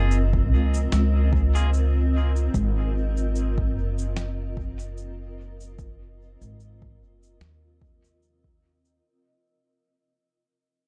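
A woody, dark upright bass sits up front, its pizzicato steel strings carrying this hazy, spacious ambient dub clip at 74 BPM in Ab mixolydian, with a 16th-note swing. Behind it, a granular cloud pad holds sustained chords from Gbmaj7 to Ab7 at 2.5 seconds, its detuned unison tone blurred, bright and evolving, with a slow attack, long release, moving notch and built-in reverb. A clean, twangy electric guitar adds picked stabs drenched in lush chorus and dub echo, falling silent at 1.7 seconds. Muffled, pitched-down shaker and snare, compressed and tape-toned, trail dub echo, while an overdriven, layered deep kick enters at 0.3 seconds and stays in the background. The whole passage fades out within a dark, warm digital ambience.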